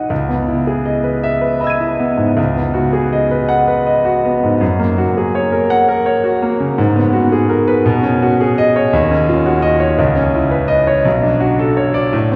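Wistful and hazy, this short impressionist classical excerpt for solo piano drifts in 6/8 at a slow, rubato 51-57 BPM in C# dorian, moving through lush ninth chords from C#m9 to F#add9, G#m9 and a closing Bm9. The concert grand sits up front with a clear, smooth, vintage tone and deep bass, spanning B1 to D#7 from the start to 12.4 seconds. A wet church reverb with a long 3.5-second tail blurs the harmonies into a haze.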